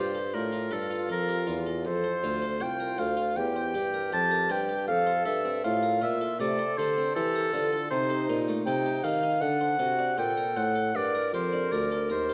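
A wet recital-hall reverb surrounds this short, introspective and grave excerpt of a baroque-style sonata movement, played with rubato in a slow four. A bright, airy wooden flute carries the melody with a straight tone and crisp attack, while an up-front oboe with a smooth top sings a second line above it, both sounding throughout. A round, plucked Italian-style harpsichord and a mellow, present bassoon form the continuo beneath, and the harmony settles on a G minor chord at 10.9 seconds.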